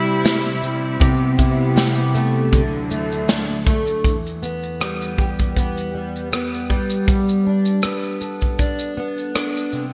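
A lightly swung sixteenth-note feel in 4/4 carries this sunny, easy-going acoustic pop excerpt, where a full-bodied, double-tracked fingerpicked plugged-in jumbo steel-string acoustic guitar sits up front beside a natural country drum kit of punchy kick, rim click, shaker and medium-tuned snare with gated reverb that enters at 0.2 seconds, while an intimate, soft-attack bowed string section holds sul tasto sustained chords with light vibrato until 4.0 seconds, the whole set in a lush hall reverb with bright 1980s-style digital production.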